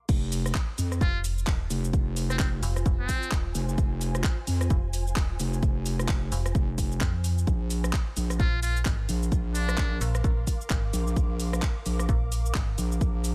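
A punchy, up-front electronic kick drives this aggressive, swaggering bass house drop at 130 BPM in 4/4, with a swung sixteenth-note feel from a tape-warm house kit of hi-hat, shaker, handclaps, rim click and crash cymbal, all in F dorian moving from Fm to Bb at 7.5 seconds. A heavy, saturated wobble bass with chorus and overdrive pumps against the kick alongside a metallic, digital FM bass that enters at 1.0 seconds, while an ethereal, detuned pad fades in softly behind them from 1.8 seconds. A buzzy trumpet with a metal mute plays brief solo phrases through a digital delay, over a dry, high-passed mix with a faint mains hum, cut from a longer piece.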